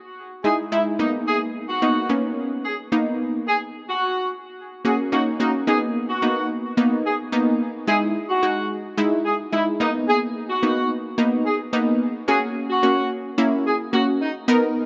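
A round, detuned analog pluck with chorus carries the accompaniment from 0.4 seconds while a clear horn section with light vibrato and dub echo sings the melody in this euphoric, carefree fragment of a longer pop piece, set in a moderate plate reverb with a dark, warm production.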